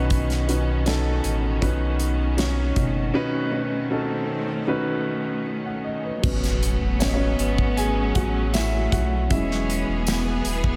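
A straight 4/4 pulse at 78 BPM carries this emotional, hopeful pop ballad, taken from a longer piece, with a polished acoustic drum kit of tight kick, snare, hi-hat and crash sitting up front beside a deep, round sine sub bass and a concert grand piano given a slapback echo. Lush bowed strings hold sustained chords over Badd9, A6 and Emaj7, and a break begins at 3.1 seconds, with a very quiet electronic swell and impact arriving at 4.0 seconds. The piano then takes a solo at 6.2 seconds, joined by a floating sul tasto cello section with its own slapback, while a jingly tambourine sits close and dry in the background and a moderate, lush hall reverb lends the mix an arena-sized sound.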